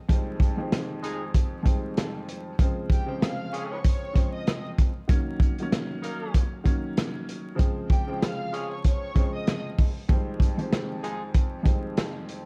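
A swung 96 BPM boom-bap groove from a crunchy, saturated breakbeat kit with a tight kick, medium-tuned snare, rim click, hi-hat and vintage 12-bit sampler character sits up front over a dark, worn grand piano with audible action noise and cassette-tape coloring, while mellow jazz-style horn stabs in octave doubling enter at 1.0 seconds and a smooth, vibrato-laden violin section carries the melody from 2.9 to 9.6 seconds, giving this tough, gritty hip-hop excerpt, cut from a longer piece, its moody pull through Fm7, Dbmaj9#11 and Ebm7 beneath vinyl crackle and studio reverb.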